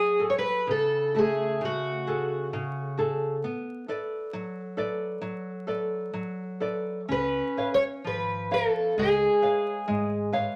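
A fado-style ballad in F# minor, cut from a longer piece, it moves at a free, rubato pace around 61-68 BPM in 2/4, with a passionate, longing mood. A fingerpicked twelve-string acoustic guitar carries the melody up front, its dark, shimmering, octave-doubled tone heard from the start until 3.0 seconds and again from 7.1 seconds. Beneath it, a nylon-string guitar plays fingerpicked accompaniment throughout, small and warm in sound with audible finger squeak. After the harmony moves from F#madd9 to Bm7, a woody fretless electric bass enters at 7.1 seconds with the arrival of C#7, round and hollow-bodied with an amped edge. Moderate studio reverb and a layer of vinyl crackle give the recording an aged, intimate atmosphere.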